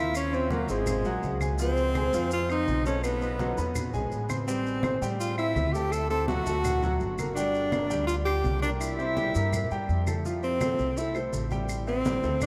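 A lively, sunny slice of Afro-Cuban jazz, cut from a longer piece, where a breathy, close-miked tenor saxophone carries the melody with vibrato and subtone, joined by an airy, mellow flute in the background until 9.8 seconds, before the saxophone takes a solo at 10.3 seconds. A clear baby grand piano provides accompaniment beneath, an up-front pizzicato upright bass adds woody steel-string tone, and low-tuned congas played with soft hands sit distant in the mix alongside very quiet claves and grainy maracas. The whole ensemble is bathed in a vast, echoing cathedral reverb.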